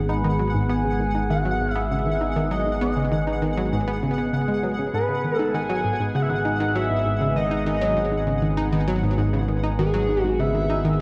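This excerpt moves in a straight, steady 4/4 pulse, a piece of ambient, sequencer-driven space music that feels expansive and hypnotic as it rests on a single G#m7 chord. Up front, an analog pluck repeats a riff with a round, bright, detuned tone and a fast, decaying attack, colored by chorus, cassette tape character and delay. Beneath it, a fat analog bass holds a thick, wave-folded low note, while a sweeping resonant pad sustains evolving chords with a slow filter swell, sub octave and long release. A shimmering pulse-width lead enters at 0.1 s, carrying a dark, retro melody with vibrato, chorus and delay. High above, a pulsing gated texture sits quietly in the background, tempo-synced and detuned, with its own built-in reverb, and the whole mix is bathed in a wet echo chamber that gives it an echo-heavy sense of space.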